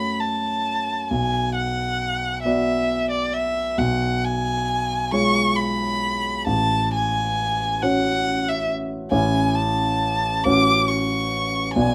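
Classical and romantic in character, this short excerpt from a longer duo for violin and grand piano carries a solemn, melancholic mood, unfolding at a slow pace in a lilting 6/8 with a flexible, rubato feel. A single bowed violin sings the melody up front in a high register, its tone rich and expressive, colored by vibrato and gliding portamento between notes. Beneath it, the grand piano supplies a warm, natural accompaniment that reaches from deep bass up into the middle range, sitting equally close to the listener. The harmony moves through minor and dominant colors before settling toward a brighter major chord near 9.1 seconds and then slipping back into minor by 10.5 seconds. Light reverb gives the pair a gentle sense of space while keeping both instruments intimate and present.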